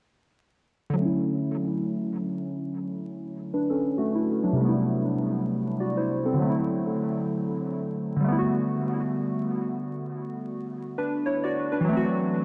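Nostalgic and dreamy, this slow hip hop excerpt at 66 BPM sways with a swung sixteenth feel in D major. Warm analog keys carry the accompaniment from 0.9 seconds, their round, detuned, wave-folded tone sitting up front with chorus, dub echo and a filter sweep as the chords drift from Dmaj7 through Am7, D7 and Gmaj7 to F#m7b5. A moderate plate reverb and a thick wash of echo blur the mix, while vinyl crackle adds a worn, dusty patina.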